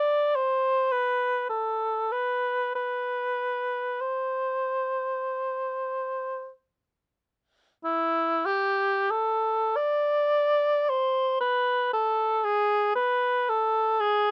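Serene and lyrical, this short classical passage, cut from a longer piece, features an unaccompanied cor anglais playing freely with expressive rubato, its tone warm with a light vibrato and a smooth top. Close, detailed microphones place the instrument up front in a dry space with little reverb, so every nuance of the solo line comes through clearly. The music shifts into a new section at 7.9 seconds and continues until the cut at 14.3 seconds.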